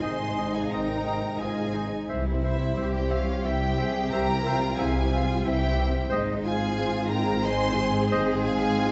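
This cinematic film-score fragment for orchestra, tender and uplifting, moves at 89 BPM in a rubato 3/4 in Ab major, its brief span of just under 9 seconds drawn from a longer piece. A smooth, even studio violin section carries the melody with light vibrato, while an airy flute section with crisp attack adds a second line alongside a background weave of a mellow solo clarinet, a solo oboe and a distant, lush symphonic violin section. A concert grand piano with deep bass and long sustain accompanies from the background alongside a very quiet, focused viola section, as a dark, roomy French horn section holds sustained chords. The low end rests on an up-front, expressive double bass section and a background cello section, both bowed with vibrato. The harmony moves from Ab to C at 2.1 seconds and returns to Ab at 6.1 seconds, all set in a moderate scoring-stage reverb with a faint vinyl crackle and a softened top end.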